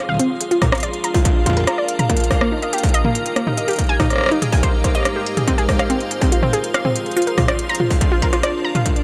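A distorted electronic kick drum sits up front in this melancholic, intricate IDM excerpt, entering at 0.6 seconds at a straight 142 BPM in 4/4, with a small-room punch to its produced sound. Beside it, an industrial drum kit of smooth hi-hats, rim clicks and toms carries the same close, roomy character. A warbly, dusty pluck spins arpeggios from Bb3 to Bb5, its lo-fi sawtooth tone softened by chorus, cassette tape grain and digital delay into something mellow and evolving. An icy glass pad holds crystalline, airy chords from Ab3 to C5 with a slow attack and long release. Deep in the background, a bubbling stepped-filter texture sits on F5, resonant and detuned. The harmony moves through Bb, Eb, Abmaj7 and Fm before returning to Bb, all under a light reverb.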